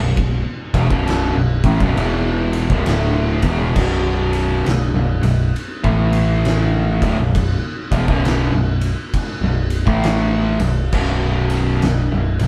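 A fuzz-drenched, double-tracked electric guitar sits up front, grinding out a picked riff in B minor that moves from Bm to A5 at 5.8 seconds and back to B5 at 6.9 seconds. This is brooding, ominous stoner and doom metal at a slow 67 BPM in 4/4, with a moderate swing on the eighth notes. A growling, overdriven electric bass runs beneath the guitar from the start, its picked tone bright and amped with tube saturation. An oversized, low-tuned acoustic drum kit joins at 0.2 seconds, its punchy kick, fat snare and dark crash and ride cymbals sounding gritty and close, as if struck in a stone room. The band plays live together in one space with moderate studio reverb, in this short cut from a longer piece.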